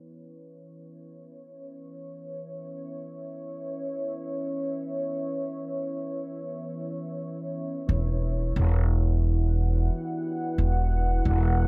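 Unfolding in free time, this ambient dub fragment from a longer piece sits in E dorian, tuned to A4 = 438 Hz, with a deep, hazy mood. A dark, moody pad enters at 0.2 seconds with sustained chords, its detuned sawtooth and sine layers, sub octave, slow attack and long release giving a warbling, vintage character, softened further by chorus and its own reverb. Through the opening stretch the pad carries a filter sweep while holding an E minor chord. At 7.9 seconds the harmony shifts to Em9 as an upright bass arrives on a low E, plucked pizzicato on gut strings with a woody, thumpy tone placed up front. Light reverb and a sense of studio ambience surround the whole, and both parts ring on until the fragment ends at 11.7 seconds.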